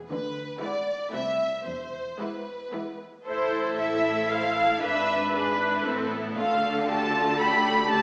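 An up-front symphonic violin section carries a smooth, even second line from B3 to B5, entering at 0.6 s together with a clear, intense viola section that fills in the accompaniment. From 0.1 s a closer, expressive studio violin section sings the melody between E4 and E5 with lush vibrato. Beneath it, a rich studio cello section and a symphonic double bass section, the latter sitting in the background, hold down the bass. This is a quick, graceful and cheerful classical-period movement for string orchestra in A minor and 3/4 at 116 BPM, played with rubato, its harmony moving from E7 over D through A minor and E, with the opening theme beginning again at 3.3 s before turning toward D minor. A wet recital-hall reverb places the ensemble further back in the room with a small-speaker sound, and the passage is cut from a longer piece.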